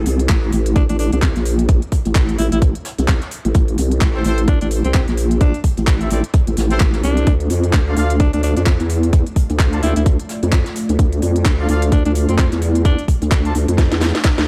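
A nasal, saturated vowel-sweep wobble bass opens this gritty, aggressive bass house excerpt at 129 BPM in A phrygian, soon joined by a tight, up-front electronic kick, a garage kit with cracking snare, handclaps and crisp hats, and a very quiet brushed jazz kit, while a raspy, growling alto saxophone carries a jazz-style melody with delay from 0.8 seconds, a brilliant horn section adds octave-doubled pop stabs from 4.1 seconds, the chords move from Am to Dm at 7.3 seconds, and a moody, detuned analog pad slips in behind at 9.3 seconds before a closing drum fill, all set in a dark small-room ambience.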